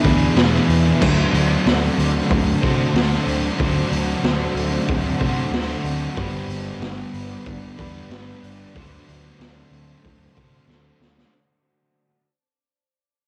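Shoegaze and dream pop rock at 93 BPM in D mixolydian, this hazy, dreamy 11.3-second fragment of a longer piece fades out throughout as a raw garage drum kit, boomy and gritty with a rolled-off top, sits up front beside a round, foam-muted picked bass, closing with a drum fill at 10.7 seconds. An overdriven guitar carries the main riff through reverse reverb and cassette tape, a dark, very quiet fuzz guitar adds a riff lower down, and a slightly broken-up guitar through a small old amp fingers soft arpeggios. Behind them a blurred granular cloud pad holds sustained chords from E7 to D7, Gmaj7 and D5, all wrapped in the hiss and ambience of a home cassette recording.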